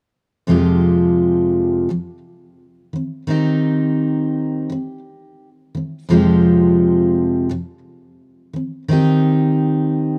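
In a straight, unhurried 4/4, a picked steel-string acoustic guitar carries this wistful, reflective pop fragment from 0.5 to 10.2 seconds, cycling twice between Fmadd9 and Cm/Eb. The jumbo-bodied guitar sounds full and up front, set in a dry, close 1970s-style studio sound with a touch of studio reverb, which gives it an intimate, pensive character. The passage is cut from a longer piece.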